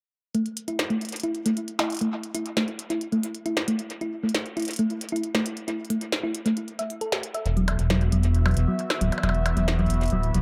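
Wistful and intricate, this IDM fragment at 135 BPM opens with a round, tine-like thumb-piano synth pluck spinning arpeggios under a filter sweep alongside a glitchy, overdriven drum kit of clicky hats, percussion blips and a tiny snare, all soaked in dub echo and spring reverb, before a dark, rumbling detuned saw bass enters at 7.5 seconds and a warbly, nostalgic tape-like pad with chorus and phaser joins at 7.7 seconds as the harmony moves from A5 to Esus2.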